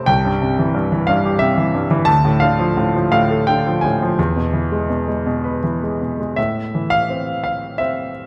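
Cool and bittersweet, this short fragment of lyrical classical solo piano moves in a rubato 3/4 at roughly 78-92 BPM in A minor, its intimate, up-front concert grand spanning deep bass to a polished upper register with short sustain and audible action noise inside a moderate concert hall reverb, as the harmony passes from C through Dm and E before settling onto Am at 6.4 seconds.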